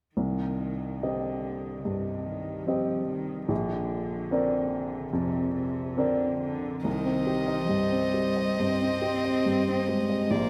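Neoclassical piano and strings in C minor, this reflective, melancholic excerpt moves at 71 BPM in 4/4 with a rubato, uneven pulse. A woody, vintage-toned upright piano sits up front as accompaniment from the opening, joined by a dark, intimate solo cello carrying a second line with vibrato, its bow drawn sul tasto with a soft attack. The harmony rests on C minor, shifts to Bbadd9 at 3.5 seconds, and returns to C minor as a new section opens at 6.9 seconds. Just before that, a single viola enters in the background, nasal yet pure and floating, holding a high note, and then a rich violin takes the melody with light vibrato and an airy, sul tasto bow. A plate reverb with a three-second tail bathes the rough home-demo mix, and the passage is cut from a longer piece.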